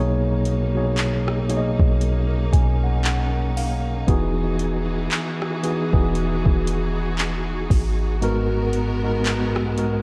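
Contemporary R&B at a slow 58 BPM with a swung 16th feel, moody and late-night, this excerpt moves from Bmaj13 to Emaj9 to Abm9 under a dry, worn cassette-tape haze with warbly pitch drift. A mellow tine electric piano sits up front, adding a fill from 2.0 to 4.1 seconds, while a lush, bowed studio string section holds sustained chords with vibrato and sidechain pumping, and a deep, boomy 808-style bass rounds out the low end. From 0.5 seconds a produced electronic drum kit joins with a soft kick, metallic hi-hats, handclaps and rim clicks, re-recorded in a large room and placed up front.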